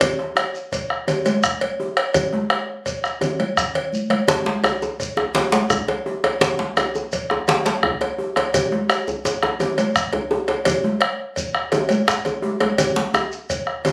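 A tight, cracking second djembe, compressed, saturated and up front, joins at 4.3 s after a drum fill and plays until 13.3 s within a powerful, earthy West African drum ensemble in 12/8 at 113 BPM. Alongside it, a round bombo, a metallic cowbell, high-tuned congas with thick skins, a vintage, band-limited djembe carrying metal rattles, and a grainy, mellow shekere play throughout this short cut from a longer piece. The phone recording in the room carries moderate studio reverb, and a second brief fill arrives at 12.3 s.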